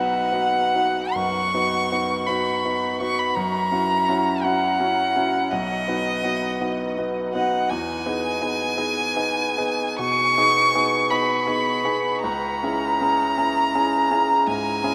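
Classical romantic duo for violin and grand piano in a rubato 12/8, moving at roughly 46-57 BPM in dotted quarters and tuned to A4 = 443 Hz, with a melancholic, yearning mood in this brief fragment cut from a longer piece. A single bowed violin carries the melody up front with vibrato and a focused, smooth top, while the bright grand piano accompanies with brilliant, polished tone, long sustain and audible action noise. Both sit in a vast, echoing space with a huge, wet reverb of 8.2 seconds, as the harmony drifts from B through F#7 and Emaj7 before settling on C#m at 12.2 seconds.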